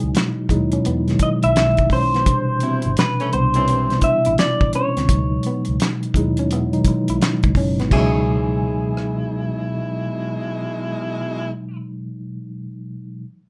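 A rough home-demo mix in a wet small room carries this smooth, sultry R&B and neo-soul piece at 85 BPM with a swung sixteenth feel. A mellow tine electric piano and a round, foam-muted fingered bass sit under a cloth-damped, thuddy drum kit with a fat snare, rim click, handclaps and dark, gritty cymbals. From 0.2 s a quieter picked guitar with spring reverb adds a second line in the background, and from 1.2 s a dark, lo-fi, slightly broken-up guitar with slapback echo carries the melody. From 2.6 s a soft-attack saxophone section with vibrato adds jazz-style stabs over chords moving from C#m11 to Am11 and back.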